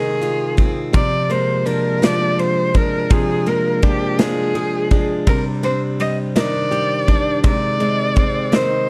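Dramatic and melancholic, this slow six-eight pop ballad moves at 55 BPM in a dark, warm small-room sound, with a rich, bowed cello carrying the melody up front with smooth vibrato over a fingerpicked steel-string acoustic guitar whose finger squeaks come through. A modern studio drum kit enters at 0.2 seconds with a tight kick, medium-tuned snare and bright ride cymbal, and a clean, compressed electric guitar recorded direct joins at 0.9 seconds with picked arpeggios. The harmony circles through Fm7/C, Bb7/C and Cmadd9 before returning to a rootless Fm7/C, in a passage cut from a longer piece.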